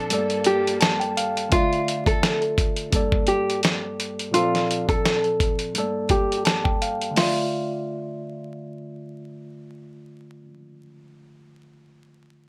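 Vinyl crackle sits over a light reverb in this moody, reflective boom-bap hip-hop passage, cut from a longer piece and moving at 85 BPM in 4/4 with a gentle 16th-note swing in D minor. A worn, slightly out-of-tune tine electric piano carries the accompaniment up front, clean and direct, through chords that move from Gmadd9 to Dmadd9 and on to Bbmaj7. A lush, bowed string section holds sustained chords in the background only at the start, until 1.5 seconds. A dusty, compressed sampler-style drum kit, gritty and re-recorded in a small room, brings a thumpy kick, a medium-tuned snare and hi-hat up front, with the kick muted at first, then a filter sweep runs until 7.2 seconds. Above it, a full-bodied, fingerpicked nylon-string guitar plays a narrow melody with plate reverb and delay, lingering after the drums drop out until 9.2 seconds.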